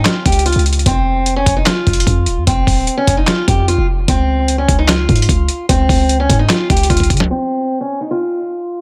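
Melancholic and menacing, this half-time trap and hip hop fragment sets a boxy, picked acoustic archtop guitar melody, darkened by a low-pass filter and tape echo, up front over a deep, boomy 808-style bass with a sine tone and noise layer. A gritty, overdriven sampler-style drum kit with a thumpy kick, medium-tuned snare, hi-hat and handclaps plays until a drum fill at 6.9 seconds. The drums and bass then drop out at 7.3 seconds, leaving the guitar alone under a filter sweep until 8.8 seconds.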